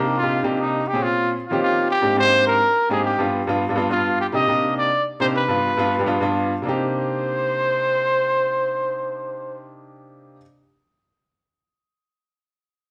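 Jazz in C minor at a brisk 208 BPM in straight 4/4, this short cut from a longer piece carries a sophisticated, sultry mood. A breathy trumpet takes the melody from 0.2 seconds, its soft attack, vibrato and whispered, intimate tone sitting up front as a solo voice. A clear baby grand piano supplies the accompaniment from the opening moment to 10.4 seconds, natural in character and close enough that its action noise can be heard. The harmony moves through rich chords such as Cm9, Eb13, Abmaj9#11 and G7, and Cm9 returns at 6.6 seconds as a new section begins. The band plays live together in one large studio, wrapped in a wet reverb that gives the performance a sense of space.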